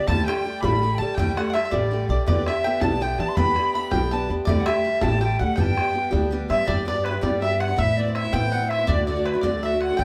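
An airy wooden flute carries the melody of this cheerful, lively Celtic jig, its tongued, expressive line shimmering with vibrato and set back at a distance in plate reverb and tape echo. Beneath it, a twangy banjo played with fingerpicks and a single dark, nasal fiddle with a reedy gut-string tone share a second line, the fiddle bowed and slightly boxy. A picked acoustic archtop guitar sits up front with a warm accompaniment, while a growly, woody upright bass plays pizzicato on steel strings. A boomy, open bodhran sounds distant, as if in a large room, driving the 6/8 pulse at 109 BPM in G major. Cut from a longer piece and heard in a wet small room, the tune moves into a new section at 6.7 seconds, with chords such as Em7, G, Amadd9 and D shaping the harmony.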